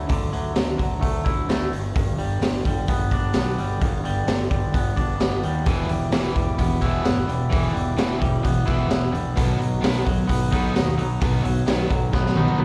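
Heard as a live gig through a club PA with small-room reverb, this brooding, cathartic quiet-loud alternative rock excerpt at 130 BPM in E minor sets a clean, twangy electric guitar playing arpeggios with slapback echo over a growly fuzz bass and an up-front, gritty garage drum kit with a punchy kick and high-tuned snare, until a bright overdriven guitar riff with slapback echo joins in the background at 5.7 seconds, while the harmony moves through Dadd9, G, Em and B before a drum fill at 12.1 seconds.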